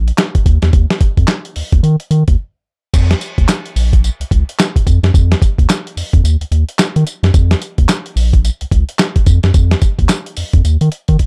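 A swung sixteenth-note groove at 109 BPM in 4/4 drives this slick, punchy new jack swing excerpt, with a gritty, compressed sampler-style drum kit of thumpy kick, medium-tuned snare, handclaps, hi-hat, tambourine and crash sitting up front. A round, deep analog bass with a nasal, sustained tone and fast attack runs from Bb1 to Eb3 alongside the drums throughout, with a brief break at 2.4 seconds before the second section begins at 2.9 seconds. The dry, dark production keeps both parts close, with the drums carrying a tape-warm tinge.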